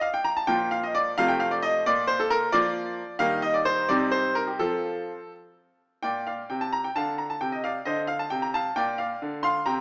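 Classical-period piano sonatina in 6/8 with a playful, cheerful mood and rubato, cut from a longer piece, where a bright concert grand plays solo from Bb2 up to C6, its brilliant, up-front tone with deep bass and short sustain set in a moderate recital-hall reverb and heard through a small-speaker sound, shifting into a new section at 6.0 seconds.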